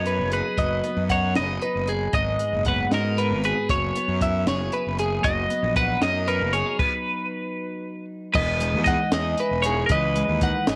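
A fuzzed, overdriven fingered electric bass sits up front with a round, punchy tone, anchoring this playful, bright math rock and midwest emo excerpt in B major, moving in 6/8 at 77 BPM counted in dotted quarters. Three clean, compressed twelve-string electric guitars fill out the top: one carries the melody with a bright, picked voice, another plays twangy accompaniment through a phaser, and a third spins out arpeggios above it. A compact cocktail drum kit enters at 0.1 seconds with crash, hi-hat, kick and a high-tuned snare, its sound dark and smooth with a rolled-off top and a punchy kick. The harmony moves from B/F# through F#9sus4 and Bmaj7/F#, and a stop from 6.8 to 8.3 seconds sets up a new section that settles on Emaj7. A small room reverb gives the whole piece an intimate, close feel.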